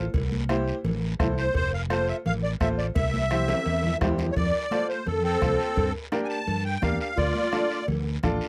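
A bright, woody upright piano with audible action noise and a punchy fingered electric bass open this joyful, danceable cumbia excerpt at 170 BPM in F major, joined at once by a soft-beatered bombo, a raspy guiro, ringing cowbell and timbales and high-tuned, damped congas set back in the background, before a reedy, shimmering musette accordion enters up front at 1.4 seconds and, after a drum fill, takes a solo from 4.4 seconds, captured in a dry, close 1970s-style studio sound with light reverb.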